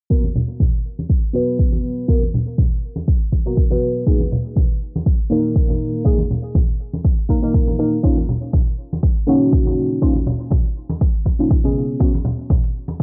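A deep, overdriven electronic kick drum sits up front in this moody, hypnotic deep house excerpt at 121 BPM with a light 16th-note swing, while a glossy, retro chorused polysynth plays sustained pulse-width and sawtooth stabs from 0.1 to 12.1 seconds through a filter sweep, sidechain pumping and analog delay over chords moving from B5 to A#7sus4, Bmaj9#11 and C#7sus4, backed by acoustic congas and a very quiet, gritty electronic hi-hat, all softened by light reverb and the muffled, low-passed character of a home cassette recording.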